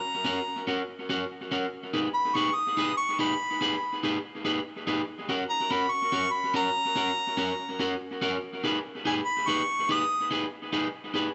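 A punchy harmonica with a smooth top carries a pop-style solo melody up front in this mischievous, energetic ska excerpt at 143 BPM in G# minor, with a light swing on the eighths. A slightly broken-up electric guitar, picked and treated with analog delay, plays accompaniment from 0.2 s to 11.3 s over chords moving between F# and G#m, while the harmonica drops out at 10.3 s. A moderate large-studio reverb surrounds both parts, and the sound is mellow, with its highs rolled off.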